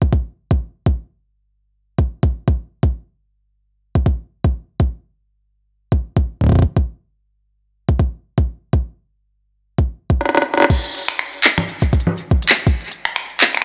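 Intricate and melancholic, this swung IDM fragment opens with a soft, overdriven electronic kick drum playing alone until a drum fill at 10.2 seconds brings in an up-front organic electronic kit of woody snare, smooth hi-hat, congas, cabasa, crash cymbal, finger snaps and handclaps, with the kick dropping out at 12.8 seconds in a dry, small-room sound.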